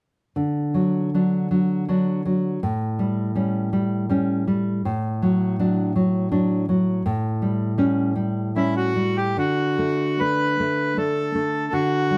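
A thumb-plucked, deep classical nylon-string guitar opens this tender, romantic duo in D major at 80 BPM in a rubato 3/4, cut from a longer piece, laying an up-front accompaniment over moderate studio reverb until a reedy, bright bandoneon steps forward with the melody at 8.6 s and sings alongside it to the close at 12.2 s.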